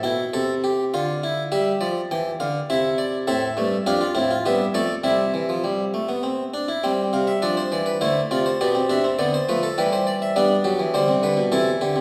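A bright, plucked Flemish-style harpsichord on a single set of strings plays alone from the start, sitting up front while a wet recital-hall reverb lends the sound a sense of distance. This serious, solemn baroque-style fugue in four parts moves in a straight triple metre, spanning from F2 to G5 over harmony that opens on A minor before settling toward C. A second section begins at 6.8 seconds, and the passage is cut from a longer work.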